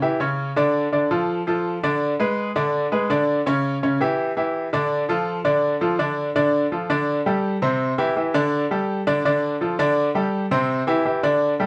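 A brilliant solo grand piano opens this fiery, passionate Latin excerpt at 166 BPM in D minor, moving through diminished chords around D minor before a new section at 6.4 seconds shifts to Gsus2 and C harmonies. The piano sits up front with an intimate presence, long sustain and audible action noise. A modest small-room reverb lends the recording the sense of being heard from further back in the room.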